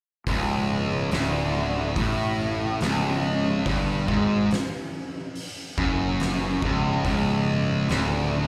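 Heard live through a club PA with club reverb, this brooding stoner and doom metal excerpt crawls along at 71 BPM in 4/4, as an up-front, double-tracked fuzz guitar grinds out a bright, distorted low riff on a C#5 chord, a growly overdriven fingered bass rumbles beneath it, and an oversized low-tuned acoustic kit with a fat snare, punchy kick and hi-hat pumps and saturates in the big room until its hits stop at 8.1 seconds.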